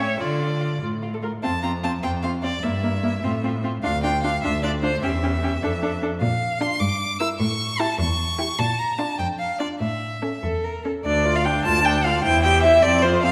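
Bathed in the lingering reverb of a scoring stage, this quick, urgent classical-period movement for string quartet in 6/8 at 100 BPM (dotted quarters), cut from a longer piece, pushes restlessly from F major into D minor at 6.2 s, with a focused, vibrato-laden first violin carrying the high melody over a smooth, distant second violin line, a warm viola accompaniment coloured by expressive portamento, and a rich, up-front cello anchoring the bass.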